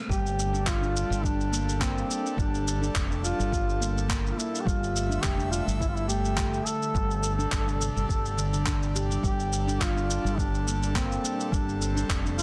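Organic downtempo with a mystical air and a light swing, this excerpt sets a distant, roomy duduk melody, full of vibrato and scooped notes and roughened by vintage 12-bit sampler grit and digital delay, over an airy, breathy pad that pumps with sidechain and shimmers with chorus. A ringing handpan, played with soft fingertips, spins meditative arpeggios through tape echo, while a round, punchy fretless bass, also pumping, anchors the low end beneath a deep, layered electronic kick and gritty, sampler-style shaker and handclaps. The chords move from Gm9 through Dm and Csus2/G to Gmadd9 in a dry, dense, heavily limited modern mix.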